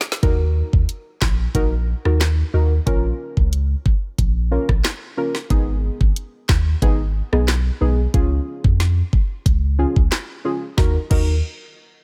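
Tough and hypnotic, this dancehall excerpt moves at 91 BPM in Eb minor, opening with a drum fill at 0.0 s on an electronic, up-front kit of knocking kick, woody snare, hats, handclaps, rim clicks and crash cymbal. A punchy, up-front sine sub bass with a pitch-drop attack sustains beneath dark, nasal chord stabs that carry chorus and a filter sweep through Ebm, Bbm, Abm and Db before returning to Ebm at 10.8 s. The whole is set in a digital ambience.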